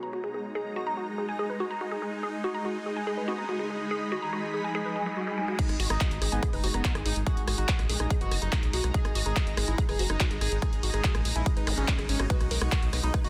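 A dense, heavily limited modern master with light reverb opens on an alien, psychedelic trance bed: a swarming, tense drone of detuned sustained chords and a blurred, cloudy granular pad, both carrying their own built-in reverb and sidechain pumping, under a woody, percussive wave-folded pluck riff dressed in chorus and tape echo, while filter sweeps move over a synth arpeggio sound and the drums. A very quiet, nasal vowel-sweep wobble bass slips in as a second line at 3.3 seconds, and an electronic riser begins at 3.8 seconds, with a brief zap arriving near the end. At 5.6 seconds the drop hits: a punchy, up-front electronic kick with studio reverb joins a layered big-room dance kit of crash, handclaps, hi-hat and rim click, its snare, hats and cymbals low-pass filtered. A round, deep analog bass settles in underneath, dark and evolving with a ring-modulated edge. Over it all a gritty, screaming, guitar-like overdriven synth lead carries the melody with vibrato, phaser, digital delay and pumping, in a clip cut from a longer piece.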